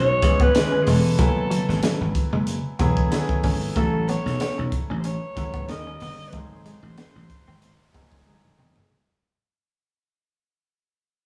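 A growling alto saxophone leads this polished 1980s jazz-funk pop excerpt, raspy and up front with vintage vibrato as it carries the melody over a slick, urban groove with a light swing. Beneath it, a dry thumbed slap bass adds bright, foam-muted punch, while a clear concert grand piano fills in the accompaniment with deep bass and long sustain. A semi-hollow electric guitar plays a clean, compressed riff in the background, and low-tuned congas sit very quietly at a distance. The crisp fusion drum kit enters at 0.2 seconds with a saturated, gritty edge, a high-tuned snare and punchy kick, closing on a drum fill from 8.3 seconds. The band sounds like it is playing live in one room, bathed in a wet, large studio reverb, and the whole passage sits within a fade-out as the chords move from C#m7 through F#m11 and A6 to a tense G#7b9.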